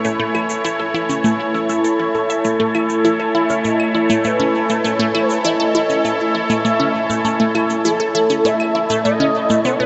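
Ambient, sequencer-driven space music with an expansive, cosmic mood, cut from a longer piece and resting on a single Amaj7 chord, where a swirling, detuned analog pad with phaser and chorus sustains up front beside a juicy, squelchy blip pluck riff whose resonant filter and tape echo give it a vivid bite. Electronic shaker and claves, overdriven and re-recorded in a small room, sit low in the mix, while a breathy, wind-like tuned noise texture drifts in the background. At 3.4 seconds a dark, warbling portamento lead enters with vibrato and ensemble chorus, all of it bathed in a vast, echoing reverb with a hazy cassette-tape character.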